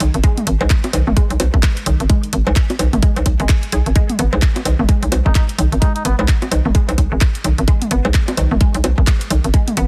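Quirky and sparse, this minimal techno excerpt at 129 BPM in G# minor rides a 16th-note swing, with a hollow, bouncy FM bass pumping beneath a tight, up-front electronic kick, garage handclaps and hi-hat, tape-warm electronic toms, cowbell and bongos, and a squelchy resonant blip pluck riff drifting in the background through phaser, chorus and tape echo, while a veiled, breathy cup-muted trumpet with vibrato slips in briefly from 5.3 to 6.2 seconds, all in a dry, dense, heavily limited master.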